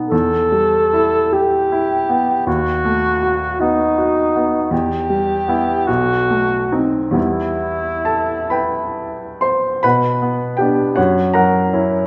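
A resonant recital hall wraps this recording in a generous, wet reverb, giving it a spacious concert-stage sound. It is a romantic classical duo for alto saxophone and grand piano, elegiac and yearning in mood, moving slowly in a flexible six-eight with free rubato. The alto saxophone carries the melody from 0.1 seconds, its warm, classical-style tone shaded with light vibrato; it sits up front yet keeps a roomy, distant aura. Beneath it, the grand piano accompanies across a broad range with a brilliant, open, bright sound, also placed up front. The saxophone falls away at 9.4 seconds, and the piano continues alone into a new passage at 9.8 seconds, where the minor-key harmony turns toward fresh chords before this fragment of a longer piece breaks off at 12.1 seconds.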